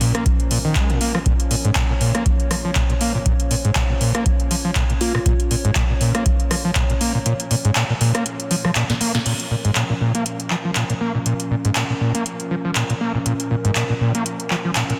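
Trippy and driving, this acid house passage, cut from a longer piece, rides a swung sixteenth-note groove in common time. An overdriven, squelchy sawtooth acid bass sits up front with its resonant filter sweep and gritty distortion, thickened by analog chorus and trailed by dub echo as it pumps against the beat. Beneath it, a warbling, tape-like pad holds sustained chords with a slow attack and long release, its detuned, wave-folded square and triangle tones giving a nostalgic, lo-fi, mellow glow through chorus and built-in reverb. A booming analog drum machine, overdriven and placed up front, supplies a crisp snare, metallic hats, handclaps, rim clicks and crash cymbal, with a short room on the snare, clap and hats. A deep, overdriven electronic kick drives the groove until it stops at 6.9 s; a drum fill arrives at 8.9 s, with a band accent at 9.1 s, leading into the next section at 9.3 s. 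A brief, sparkling, bell-like FM electric piano note appears in the background at 5.0 s, all inside a dense, heavily limited modern master with light reverb.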